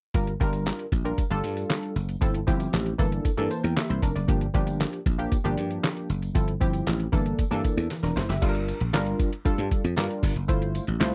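A dry, close studio sound frames this slick, funky stretch of early-eighties boogie funk, where a muffled, pitched-down sampler-style drum kit with a thumpy kick, handclaps and crash cymbal sits up front beside a growly, punchy thumbed slap bass and a mellow sawtooth polysynth comp with chorus and a filter pluck, while a jingly tambourine stays in the background and a drum fill at 7.9 s leads into a new section at 8.4 s.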